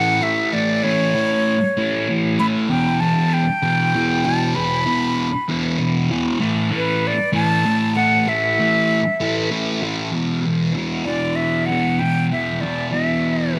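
Hypnotic and trippy, this short rock excerpt moves at 65 BPM in a straight 6/8, centered in E dorian. A thick fuzz guitar, double-tracked and up front, carries the riff in its low register throughout, its picked, distorted tone colored by a phaser. Over it, a breathy concert flute plays the melody, close-miked with a soft attack and a straight tone, trailed by tape echo. The harmony moves from A to Em at 2.7 seconds and to A5 at 6.4 seconds, then shifts into a new section built on E5 at 10.1 seconds. Light reverb gives the pair the feel of a small room.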